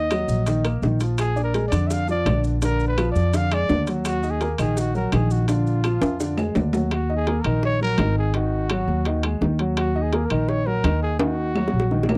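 A mellow trumpet with vibrato and scooped notes sings a jazz melody over a baby grand piano and a dark, thumpy pizzicato upright bass up front, while bongos, timbales, claves and maracas join almost at once in this fiery, sophisticated Afro-Cuban jazz piece at 168 BPM in Eb harmonic minor. Tight, high-tuned bongos and woody claves sit in the background, the ringing metal-shell timbales sound close, and the grainy maracas stop at 6.9 seconds as the phrase repeats, with drum fills closing each half. The dry, close 1970s-style studio sound frames the present trumpet and its slapback echo, cut from a longer piece.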